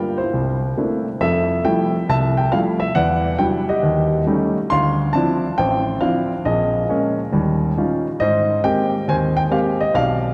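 A warm, natural-toned baby grand piano plays solo jazz up front at a relaxed 138 BPM swing, its short-sustained chords (from a C13 at 0.3 seconds through Fmaj9, Em9, Eb7#11 and Dm9 to an Abmaj9 at 8.2 seconds) ringing across A1 to C6 into a wet cathedral reverb that places this cut from a longer piece in a vast, echoing space.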